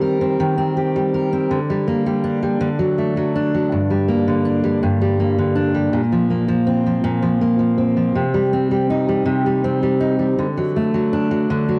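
A slow 6/8 pulse at 54 beats per minute, counted in dotted quarters, carries this brief, straight-feeling pop fragment in G minor, cut from a longer piece. A single fingerpicked steel-string acoustic guitar plays alone throughout the 11.8 seconds, ranging from G2 up to Bb4, its jumbo body giving a warm, full-bodied tone with the freshness of new strings. Sitting up front in the mix, the guitar is coloured by cassette tape character and a tape echo, while light studio reverb frames it in a homespun setting. The harmony moves from Cm7/Eb through Gm/D and D to Gm, then on to Bbsus2 and Cm before settling on D at 10.4 seconds. The mood is melancholic and aching, an intimate, unhurried lament.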